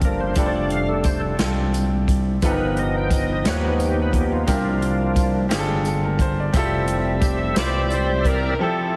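Heavily compressed, radio-like sound with lossy artefacts and a light reverb frames this uplifting, reverent slow gospel excerpt in F major, moving at 58 BPM in a straight 6/8 through F6, G7alt, C9sus4 and Fmaj9. A reedy, up-front tonewheel organ takes the solo with sustained chords, key click, light overdrive, chorus vibrato and a fast rotary speaker, while a clear, natural grand piano accompanies and a smooth, gliding synth bass with vibrato and portamento holds the low end. A polished, airy big-band drum kit with a punchy kick and medium-tuned snare plays underneath, a jingly tambourine sits close and dry in the background, and a jazz-style saxophone section with light vibrato enters on the melody at 7.6 seconds.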